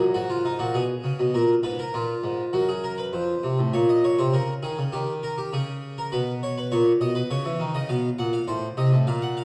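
Set in a straight triple metre, this short fragment of a baroque-style two-part invention moves with a driving, solemn purpose. A solo harpsichord carries both voices across a range from F2 to F#5, its plucked, brilliant tone heard close and up front, with the fullness of three sets of strings in the French style. The opening passage shifts at 3.1 seconds into a second section that runs to 9.4 seconds, with the harmony passing from D#m and G#m/B through F7, D#7 and Bsus2 before settling on F7/A. A recital hall's reverb hangs around the instrument, giving the close, dry attack a lingering halo. Over it all lies the worn, warbling character of old cassette tape, whose drifting pitch lends the stately counterpoint a faded, unsteady patina.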